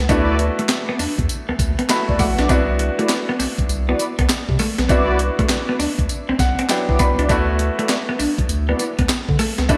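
A bright, brilliant concert grand piano, a dark, clean electric guitar riff with analog chorus, and a deep, round analog bass open this bouncy, flirty new jack swing excerpt at 100 BPM in D mixolydian, joined at 0.1 seconds by a gritty, compressed breakbeat sampler-style kit with a thumpy kick, high-tuned snare, handclaps, hi-hat and tambourine sitting up front. Mellow synth brass stabs with chorus and digital delay sit in the background, while the piano adds fills at 1.6 and 6.1 seconds over a swung groove moving between D69 and Cmaj9#11. The 1980s-style digital production is bright, bathed in a lush hall reverb.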